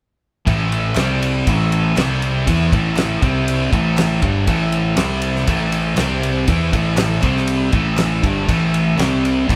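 Classic rock at 120 BPM in a straight 4/4, swaggering and driving, with a bright, compressed distorted electric guitar up front and a sludgy, dark overdriven guitar both picking a riff that alternates between A5 and C5 power chords. Beneath them a growling fingered bass with overdrive holds the low end, while a damped 70s kit with a fat snare, tight kick and dark ride cymbal keeps the beat. A very quiet, hollow group handclap joins at 1.0 seconds, and the whole band sounds as if playing live in one room with moderate reverb in this short cut from a longer piece.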